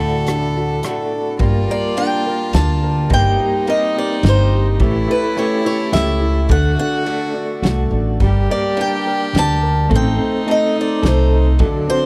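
In a straight three-beat lilt, this heartbroken, intimate acoustic folk-pop ballad opens on a woody, up-front pizzicato upright bass, a warm upright piano with audible action noise, a twangy, slightly broken-up electric guitar through a small old amp playing tremolo-tinged arpeggios, a reedy, breathing harmonium holding sustained chords in the background and a floating sul tasto violin on a second line, joined at 0.3 seconds by a loose indie drum kit with dark cymbals, a fat snare and punchy kick in a pumping studio room, before a bright, boxy, picked swing-style acoustic guitar takes the melody up front at 1.7 seconds, finger squeak and all, over chords moving from D through Gmadd9 and A7 to a closing Adim, bathed in light reverb.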